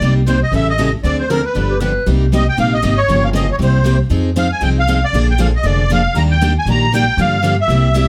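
Fiery and swinging, this short excerpt of acoustic string swing in the jazz manouche style races along at 234 BPM in C minor with a gentle swing on the eighths. A reedy, shimmering musette accordion carries the melody up front, its vintage, band-limited tone sitting high over the band. Two picked steel-string acoustic guitars supply the accompaniment: one full-bodied with audible finger squeak, the other bright and boxy with fresh strings. A woody, dark upright bass with gut strings thumps out the low end, pizzicato and up front, beneath a minor-key progression that moves from Cm7 through A7, Dm7b5 and G7 before heading toward Fm7, Bb7 and Ebmaj7. Briefly, from 1.7 to 2.1 seconds, a distant, growling clarinet slips in a raspy second line with subtone, light vibrato and scooped notes, all in a light reverb.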